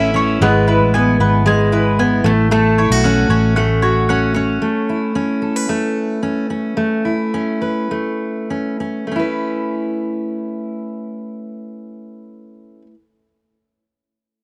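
Acoustic pop in A major with a sunny, carefree mood, this excerpt of a longer piece moves in a straight 4/4 at 96-114 BPM, passing through E/G#, F#m/A and Aadd9 and slowing down from 4.6 to 9.1 seconds. A full-bodied, fingerpicked jumbo steel-string guitar carries the accompaniment up front until 12.9 seconds, while a woody mandolin plays double-string arpeggios until 5.2 seconds and a dark, round, punchy foam-muted vintage electric bass sits forward in the mix until 4.6 seconds. Light reverb gives the sound a small-room ambience.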